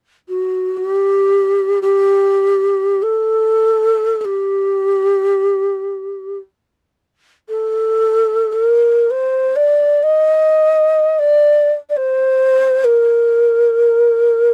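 A dry, close 1970s-style studio sound with light reverb frames this melancholic, soulful Arabic fragment, cut from a longer piece, in which a breathy, reedy low ney carries the melody from 0.3 seconds, its end-blown cane tone shaded with vibrato and tongued notes.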